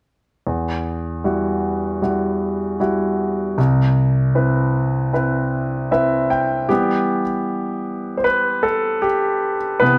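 Moving at a slow 77 BPM in a straight 4/4, this short pop piece, cut from a longer work, sets an emotional, heartbroken mood in E minor. A concert grand piano is the only part, sounding from 0.5 to 10.0 seconds across a range from C2 to G5, with a clear, intimate, polished tone, deep bass and audible action noise that keeps it present and up front. The harmony rests on Emadd9 before moving to Cmaj7 at 3.6 seconds, then settles on Em. A piano fill arrives at 5.5 seconds and leads into a solo passage from 6.7 seconds, where the music shifts into a new section. A wet studio reverb with a 0.9-second decay surrounds the piano, giving the feel of a performance captured live in one room.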